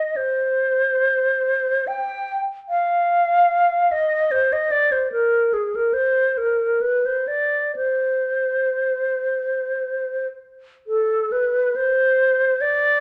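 The rhythm moves freely in rubato over a 3/4 metre, with the tempo drifting between 46 and 77 BPM and never settling into a steady pulse. This is a meditative, lonely classical fragment for unaccompanied alto flute in C minor, taken from a longer piece. The solo alto flute plays from 0.0 to 13.0 seconds within a range from Ab4 to G5. Its tone is airy and bright, with vibrato and soft note attacks, and it sits up front in the sound. A moderate reverb from a large studio gives each phrase a sense of space, and the music shifts into a new section at 10.9 seconds before the fragment ends.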